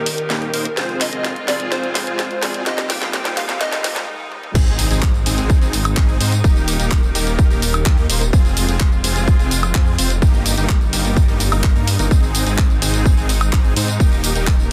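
This uplifting, triumphant festival progressive house excerpt opens on a build-up: a catchy, bright plucky unison lead carries the melody through lush chorus and delay, a huge supersaw riff runs under a filter sweep, clear bowed studio strings hold chords in the background, a thick, menacing detuned saw bass sits beneath, and the house drum kit plays fills with a cracking snare, while a very quiet riser and swell enter at 1.5 seconds. The lead stops at 4.1 seconds as a brief break begins, and at 4.6 seconds the drop lands with an impact and a punchy, up-front electronic kick, the strings, supersaw and bass pumping against it as the chords cycle. The dry, dense, heavily limited master keeps the sound full and forceful.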